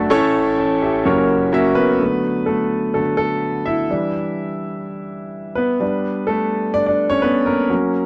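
A clear concert grand piano carries this short pop excerpt alone, reaching from a deep bass at F#1 up to A5 at a steady 126 BPM in straight 4/4. The mood is earnest and dramatic, with the chords moving from A to F# before settling on D at 2.0 seconds, then Em7 and Gadd9. Its sound is intimate and up front, polished yet close enough that the action noise of the instrument is audible beneath the notes. Each chord rings with long sustain, framed by light reverb. The recording has the dry, close character of a 1970s studio, and the passage is cut from a longer piece, ending at 8.1 seconds.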